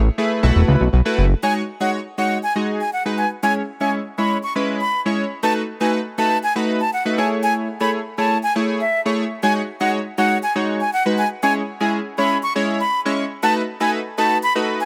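Dance-pop with a driving, bittersweet mood, cut from a longer piece, opens with a fat, saturated analog bass that plays only until 1.3 seconds, while glossy, chorused retro synth keys enter at 0.2 seconds and carry the accompaniment through to the end. At 1.4 seconds a breathy concert flute takes the melody with vibrato and a reedy, close-miked edge, trailed by dub echo. From there the arrangement builds steadily over minor-key sus and seventh chords to the end, in a light, small-room ambience.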